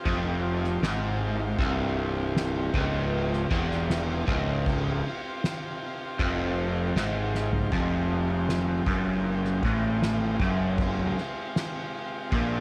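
Psychedelic rock with a trippy, dark mood, this excerpt from a longer piece moves at an unhurried 78 BPM in a straight 4/4. A crunchy, bright overdriven guitar carries the low riff, picked and double-tracked up front, its tone colored by a phaser. Beneath it, a fingered electric bass growls with round, punchy fuzz, while a vintage combo organ holds buzzy sustained chords with light vibrato in the background. The drum kit is played with soft mallets on drums and cymbals, giving a boomy kick, fat snare and dusky ride in a big room, with a fill at 7.3 seconds. The harmony shifts from Csus4 to Fmadd9 at 7.7 seconds, and the whole sits in light studio reverb.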